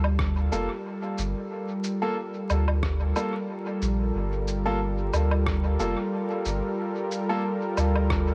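Vinyl crackle and light digital reverb frame this hazy, deep ambient dub passage, cut from a longer piece, which drifts at 91 BPM in 4/4 with a slight 16th-note swing over a lone Gm9 chord in G minor. Up front, a detuned sawtooth pad with slow attack and chorus holds smooth, warm chords while a round, soft triangle-and-square sub bass sustains beneath it. A muffled, pitched-down sampler kit of woodblock, rim click and shaker carries dub echo and small-room ambience, a deep electronic kick sits in the background from 0.2 s, and a clear, woody upright piano adds open, long-sustaining stabs with dub echo from 0.5 s to 7.4 s.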